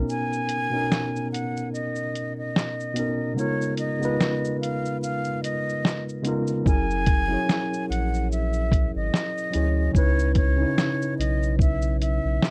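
A worn, slightly out-of-tune electric piano opens this dreamy, cosy lo-fi hip hop excerpt at 73 BPM with a gentle 16th-note swing, moving through Bmaj7, C#13, F#9 and C#m9 while a muffled, pitched-down sampler drum kit with a thumpy kick, hi-hat, shaker and snare sits up front, a close-miked breathy flute carries the soft straight-tone melody, and a deep, saturated sub bass sounds briefly at the start before returning in full at 6.7 s, all within a dark production with light reverb.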